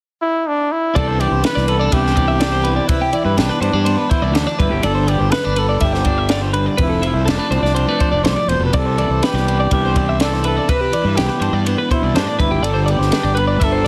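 Intricate and bright, this math rock and midwest emo excerpt moves at 123 BPM in 4/4 in C major, with a warm, lightly vibratoed pop-style trumpet carrying the melody up front from 0.2 s, while from 1.0 s a clean, picked twelve-string electric guitar plays accompaniment through lush chorus, a second twelve-string sits in the background spinning arpeggios through spring reverb, a round, overdriven fuzz bass pushes forward, and a small-room cocktail drum kit with a dark, smooth tone adds punchy kick, high-tuned snare and ride over chords moving from Cmaj9 through G and Fmaj7, back to Cmaj9 and on to Gadd9, the whole mix squeezed into a heavily compressed, radio-like sound with light reverb.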